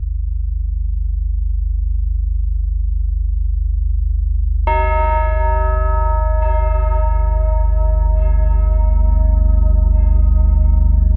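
Cavernous and ominous, this dark ambient drone piece drifts in free time, cut from a longer work. A deep, rumbling synth drone sits up front from the start to the end at 11.2 seconds, its triangle and sawtooth tones set with a slow attack, long release, built-in reverb and a subtle chorus, while a filter sweep moves across it throughout. Tubular bells enter at 4.7 seconds with solemn, metallic arpeggios struck with a plastic hammer, mid-forward and trailed by a diffuse ambient delay. The harmony shifts from a G5 opening to Ebmaj7/G as the bells arrive, shading the darkness with a brooding colour. A moderate cathedral reverb with a long 6.2-second decay gives the whole space a vast, stony depth.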